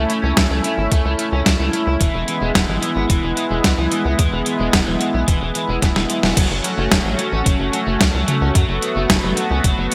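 A shimmering, detuned pulse-width pad with gritty 12-bit sampler texture and sidechain pumping opens this moody, cinematic synthwave excerpt alongside a crunchy, double-tracked picked guitar riff bathed in lush chorus and digital delay and a tight, punchy sawtooth sequencer bass that also pumps, soon joined by a thumpy, tape-warm electronic kick and an up-front, overdriven 12-bit drum machine with gated reverb, whose fill from 5.8 to 6.4 seconds and a band accent carry the A-to-E progression into an F#m section, all set in a lush hall reverb with bright 1980s-style digital production.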